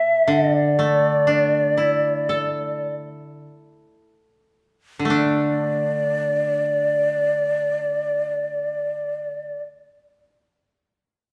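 In free time, this short cut from a longer piece of Japanese chamber music unfolds with an austere, solitary mood, tuned slightly above standard pitch at A4 = 441 Hz. A reedy, airy shakuhachi carries the melody up front from the start, staying in a narrow band between D5 and E5, its end-blown bamboo tone marked by vibrato, tongued attacks, a breathy chiff and lifted highs. Beneath it, the koto supplies accompaniment across a much deeper span from Bb2 to A4, played with fingerpicks for a woody, dry, bright attack that also sits close to the listener. The pace slows from 0.6 to 5.1 seconds, and at 5.1 seconds the music moves into a new section that runs to the end. Both instruments sound together throughout, set in a recital hall whose 1.4-second reverb lends the spare texture a resonant space.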